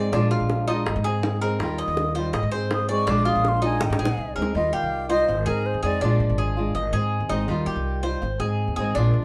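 A straight, danceable 4/4 pulse drives this sunny Cuban son and guajira cut, with tight, high-tuned bongos snapping away in a small-room sound until a drum fill closes their part at 4.5 seconds. Underneath, a dark, woody upright bass with gut strings sits up front, its thumpy pizzicato notes anchoring the groove. A fingerpicked flamenco guitar supplies warm accompaniment, while the picked Cuban tres spins arpeggios from its metallic double strings, some of them octave-doubled. At 1.6 seconds a breathy, mellow concert flute takes the melody with vibrato, a crisp attack and rolled-off highs, singing expressively until 6.2 seconds. The harmony cycles through Bb7, Ab and Ebadd9 under a moderate studio reverb, and the passage is cut from a longer piece.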